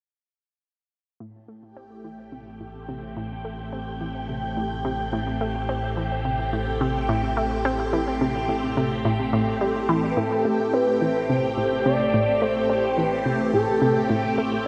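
A smooth, vibrato-tinged synth lead enters at 10.1 s with a mellow melody in lush chorus and analog delay over an ambient, mysterious and hypnotic 107 BPM bed in A minor, where a swirling, phased string machine holds sustained Am7 chords up front, a round, nasal analog pluck repeats its riff through chorus and delay, a warbling analog drone anchors the bass, and a breathy, wind-like tuned noise texture hovers high until 10.2 s, with the pluck, strings, drone and texture fading in from 1.2 s and all of it washed in a long, wet hall reverb.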